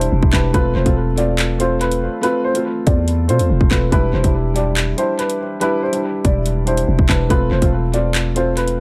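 A growling, buzzy 808-style bass drives this ominous, cold drill excerpt at 142 BPM in a half-time feel, where a dark, slightly detuned upright piano carries the melody over a soft, felt-muted upright piano with audible action noise, while a drill kit with a hard-clipped kick, metallic hats and handclaps sits up front, the pianos and drums soaked in tape echo in a dry, echo-heavy mix that moves between Em7 and F/E.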